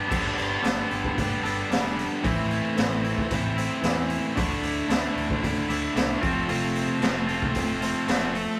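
A clean, twangy electric guitar plays arpeggios alongside a tight, distorted guitar riff from the first moment of this bittersweet, cathartic quiet-loud alternative rock excerpt, moving at 112 BPM in a straight 4/4 in G mixolydian through Gadd9, Am, Dsus2 and F. A growling, punchy overdriven bass and a raw garage drum kit join at 0.1 seconds, the kit gritty and saturated with a high-tuned snare, boomy kick, hi-hat and crash cymbal sitting up front. A small room's moderate reverb frames it all as a rough rehearsal-room recording, cut from a longer piece.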